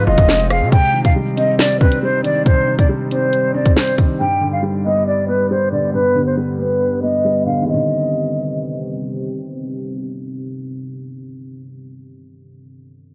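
Hip hop drill with a dark, ominous half-time feel, cut from a longer piece, where a breathy, hollow concert flute carries the melody over a vintage grand piano with audible action noise and a deep, detuned ambient pad in the background, while a saturated, aggressive 808-style bass sounds only until 0.7 seconds and a drill kit with a hard-clipped kick, sharp snare and bright hats drives from 0.2 to 4.1 seconds, all under light digital ambience and a filter sweep running from 0.7 to 7.7 seconds.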